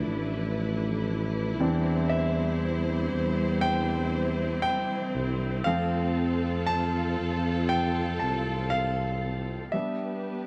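Heartbroken and longing, this slow 59 BPM pop excerpt in straight 4/4 features a clear, polished baby grand piano taking a solo from 0.0 to 9.7 seconds over a dark, woody studio string section bowing lush sul tasto chords up front, while a mellow, close-miked tuba carries the bass with soft attacks, scooped notes and a light jazz vibrato, as the harmony moves from Dmadd9 through Cadd9/E and F to Em7 in a dry, intimate 1970s-style small-room sound.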